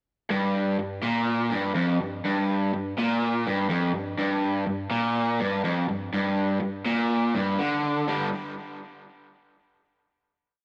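A bright, overdriven, double-tracked raw garage electric guitar sits up front from 0.3 seconds, picking a brooding, driving single-note riff between F2 and G3 in G minor at 123 BPM, its tape echo and light reverb framed by a dry, close 1970s-style studio sound, before landing on a final G5 chord at 8.1 seconds in this short solo rock piece.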